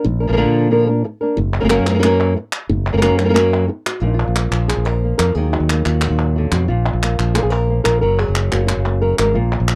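Flamenco at a driving pace in a mournful yet fiery mood, cut from a longer piece, with a dark, woody, thumb-plucked acoustic guitar carrying the melody up front, its old strings giving a boxy character. A bright, direct fingered electric bass sits close beside it from the start, and crisp palmas hand claps join at 1.5 seconds, set a little further back in a small room. The dry, close 1970s-style studio sound carries light reverb as the harmony moves through Bb, Gb and Ebm, shifting into a new section at 4.0 seconds.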